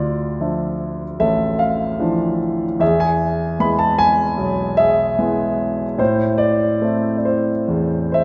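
A warm, up-front grand piano plays alone in this brief, reflective and melancholic classical fragment, its lyrical rubato phrasing moving from Dmadd9 through E at 2.8 seconds to settle on A minor at 6.0 seconds, all bathed in the long, wet reverb of a church or concert hall.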